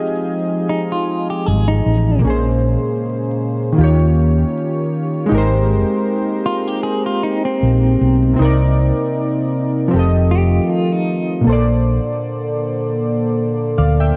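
Hazy and melancholic, this lo-fi hip hop fragment rests on up-front analog keys with a round, detuned, chorused tone, while a distant brass ensemble holds dark, softly vibrato chords in the background, both muffled by a low-pass filter. A clean, compressed electric guitar enters at 0.7 seconds with a picked second line, colored by tremolo and analog delay, and a hollow-body electric bass joins at 1.5 seconds, amped and prominent. Light digital ambience and vinyl crackle give the mix a dusky, aged sheen.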